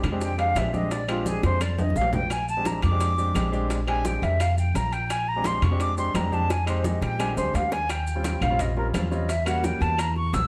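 Lively and danceable, this Afro-Cuban jazz excerpt is led by an airy silver concert flute soloing up front from 0.2 seconds, its crisp attack carried by plate reverb, while a dark, woody pizzicato upright bass anchors the bottom and a clear concert grand piano supplies accompaniment. Behind them sits a bed of percussion: ringing congas and metal-shell timbales, round low-tuned bongos, distant claves, and grainy vintage maracas, with drum fills arriving at 1.4 and 6.5 seconds. The harmony rests on a Bb13 before moving through Fm7, back to Bb13, then Eb13 and Edim7, all set in a moderate large studio space with lossy compression artefacts.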